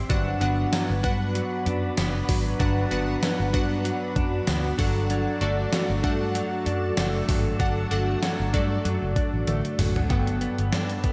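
A gated 1980s digital drum machine sits up front, its overdriven sound, thumpy kick, gated-reverb snare, hi-hat, tambourine and toms driving this uplifting, nostalgic pop excerpt at 96 BPM in 4/4 with a light swing on the sixteenths. Glassy digital keys, also up front, supply a sine-toned accompaniment with fast-attack, decaying notes, a filter sweep, chorus and slapback echo. A bright, clean, compressed electric guitar recorded direct plays a picked riff through analog chorus and slapback echo, while a dark, round, foam-muted fingered bass adds a punchy low end. In the background, a silky, mellow string machine holds soft, slow-attack chords coloured by phaser and ensemble chorus. The harmony moves from Bm to D at 4.8 seconds, a drum fill arrives at 9.5 seconds, and a new section opens on Gmaj9 at 10.1 seconds, the whole mix set in a lush hall reverb with a big arena sound.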